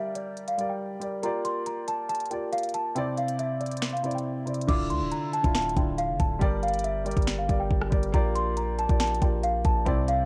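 Eerie and brooding, this short cut from a longer hip hop track rides a half-time trap feel with a lo-fi, homemade cassette character and little reverb. A worn celesta carries the melody in a bell-like, delicate voice, soft and slightly out of tune, with tape echo trailing its notes. Beneath it, a dark baby grand piano sits up front with long sustain, outlining a moody progression that moves from Gm through Bb6 and Cadd9. The electronic trap kit knocks with a hard kick, sharp snare, crisp hi-hats, finger snaps, rim clicks and a crash cymbal, all colored by cassette tape. At 4.7 seconds a hard-hitting 808-style bass enters, punchy and heavy with a fast attack and decaying sine tone layered with noise, as the harmony shifts to Dmadd9 before cycling back to Gm.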